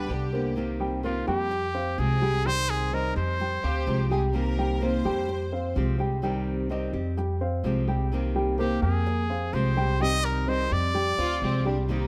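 A light reverb gives this short latin excerpt an open but close-knit sound, with the woody, thumpy upright bass sitting up front as the loudest part. At 127 BPM in a straight 4/4 and C minor, the groove is danceable with a nostalgic cast, cycling between Cm7, Fmadd9 and Cm after a brief opening G chord. A clear, close-miked trumpet carries the melody with pop-style vibrato, playing from the start to 4.1 seconds and returning at 8.6 seconds. A smooth, bowed violin section adds a second line in short appearances, including one from 3.6 to 5.8 seconds. Underneath, a bright, fingerpicked nylon-string guitar holds the accompaniment throughout, while a mellow, worn baby grand piano with audible action noise spins arpeggios, and the pizzicato gut-string bass anchors the low end.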